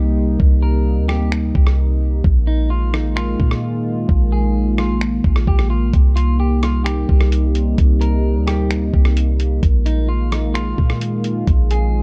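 Ethereal and melancholic, this atmospheric cloud-rap excerpt moves with a half-time feel, cut from a longer piece and dressed in a dark, warm production with little reverb. A moody analog pad holds sustained chords from the first second, its detuned sawtooth body given chorus and a sidechain pump that makes it breathe, shifting between Cm7 and Bb7sus4. Underneath, a clean 808-style bass sits up front, deep and boomy with a sine-like tone, fast attack and decaying notes. The lo-fi sampler-style drum kit enters at 0.4 seconds, compressed and muffled, with a thumpy kick, finger snaps, hi-hat and rim click placed up front. At 0.6 seconds a clean, picked electric guitar carries the melody low in the mix, its tone softened by a low-pass filter and trailed by digital delay.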